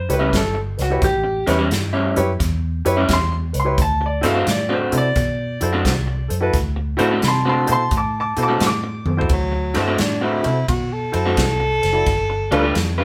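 A swung shuffle at 87 BPM in 4/4 drives this gritty, soulful electric blues in D mixolydian, cut from a longer piece and tuned slightly below standard pitch. From the start, a natural country drum kit works hi-hat, ride, snare, kick and toms in an airy studio room, its punchy kick and medium-tuned snare sitting up front, while a vintage muted fingered electric bass adds a dark, round, foam-muted bottom. An up-front electric guitar through a small old amp plays the riff with a slightly broken-up, lo-fi, picked tone, and a clear upright piano accompanies with a woody, intimate sound, long sustain and audible action noise. The harmony moves from A7 to D7 and later to G7. After a drum fill at 9.0 seconds, a tenor saxophone enters at 9.3 seconds for a jazz-style solo with light vibrato and scooped notes. The band sounds as though it is playing live in one room, with light reverb.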